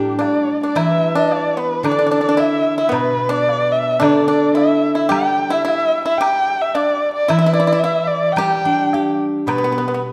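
Pastoral and graceful, this short excerpt of Chinese traditional chamber music moves at 110 BPM in 2/4 in the G gong mode, with a dark, woody erhu carrying the melody up front with vibrato and portamento, a bright, dry pipa adding a percussive second line, a ringing, silvery steel-string zither accompanying from close by, and a very quiet woodblock playing from 0.2 to 9.6 seconds, all set in a moderate recital hall reverb.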